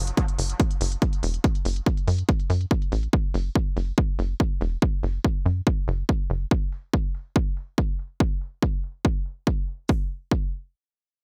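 A tight, punchy sequencer bass opens this short cut of driving, dark peak-time techno at 142 BPM in F# minor (tuned to A4 = 438 Hz), its sawtooth-and-square tone plucked by a filter with a moving notch and pumping against the sidechain until 6.5 seconds. An up-front, heavy, overdriven electronic kick and smooth, overdriven, low-pass-filtered hi-hats carry the straight 4/4 pulse, with a filter sweep running across the drums until 9.9 seconds, where a new section begins. The kick holds on to 10.4 seconds in a dry sound with little reverb.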